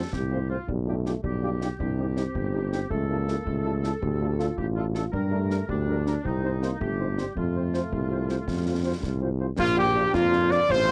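Spirited and proud, this short military-style march for wind band strides along at 108 BPM in 6/8 in Bb major, with a tight, up-front trumpet section carrying the melody over a mellow tuba bass, while a background euphonium, a woodwind section with vibrato, and a French horn section fill the inner lines, concert snare drum, bass drum and dark clash cymbals keep the march, and a very quiet, punchy trombone section and a barely audible hollow piccolo join only at 9.6 seconds, all in a dry, gritty recording.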